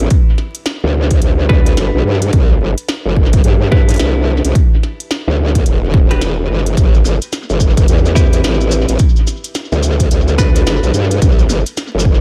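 A growling, wobbling bass with formant-filtered bite, chorus and tube saturation opens this playful, swaggering glitch hop excerpt at 108 BPM. Alongside it come clean, picked stabs from a direct-recorded electric guitar, pumping under sidechain and trailing dub echo, and a glitchy kit of tiny snare, clicky hats and shaker, tape-warm and sent through studio reverb and dub echo. A punchy, layered electronic kick sits up front from 0.1 seconds as the swung sixteenths ride through Gmaj7, Cmaj7, Em7 and Am7, all in a dry, echo-heavy mix dusted with vinyl crackle.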